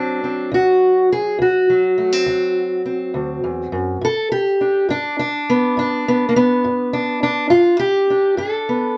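Acoustic country blues in a straight 12/8 feel, this short excerpt, cut from a longer piece, carries a soulful yet rollicking mood. A lone fingerpicked steel-string acoustic guitar plays throughout, sitting up front with a dark, boxy parlour tone. Its range runs from a low D2 up to A4, spanning both low bass notes and upper notes. The harmony opens on a D7 chord and moves to G at 4.0 seconds. A light reverb lends the sound a touch of air.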